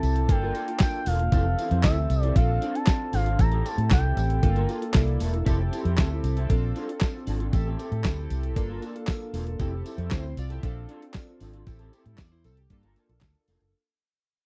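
A dry, close recording in a 1970s studio style carries this short, danceable stretch of early-eighties boogie funk, built on a thumpy, tape-warm 12-bit drum machine with handclaps and a dark, round, foam-muted fingered bass sitting up front, while a jingly tambourine stays in the background. A glossy chorused polysynth with filter sweeps and pulse-width modulation sustains chords such as Gm9, Fmaj7, Bbmaj7 and Am7, and a twangy, slightly broken-up guitar through a small old amp picks a riff from 0.2 seconds. A smooth sawtooth lead with vibrato and portamento sings the melody only until 4.9 seconds, and the feel-good groove fades out from 5.5 seconds onward.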